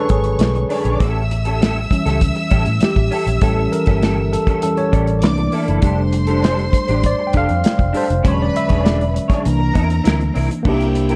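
This short clip, cut from a longer piece, has a dark, softly reverberant production that frames a smooth, romantic slice of lush 1970s-style soul. A worn, slightly out-of-tune tine electric piano sits up front, heard through its built-in speakers, and carries a solo from the start until 10.7 seconds while also supplying the chords, which move from a rootless E13 through A7, C13 and F69 before returning to E13 and settling on C7. Behind it, a bowed studio string section adds a lush, vibrato-rich second line with a smooth top, touched by tape echo. An electric guitar through a small old amp plays a picked riff, its lo-fi, slightly broken-up tone compressed and thickened with ensemble chorus. The groove comes from a round, punchy, foam-muted fingered bass and an acoustic drum kit in a small room, with a tight kick, medium-tuned snare, hi-hat and crash cymbal under a rolled-off top, both placed up front from 0.1 seconds.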